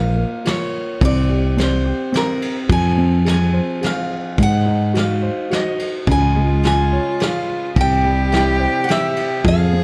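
Set in 3/4 at 107 BPM, this heartbroken, melancholic acoustic folk-pop ballad excerpt places a boxy, picked old ladder-braced acoustic guitar melody over a woody upright piano with audible action noise and long sustain, a round, dark fretless electric bass up front, and a soft brush drum kit with a tight kick, ride cymbal and rolled-off top entering at 0.5 seconds. A rich, close bowed cello with vibrato adds a smooth second line from 6.1 seconds, all in a dark production with light reverb moving from Bbm through Fm, Ab7 and Db to C.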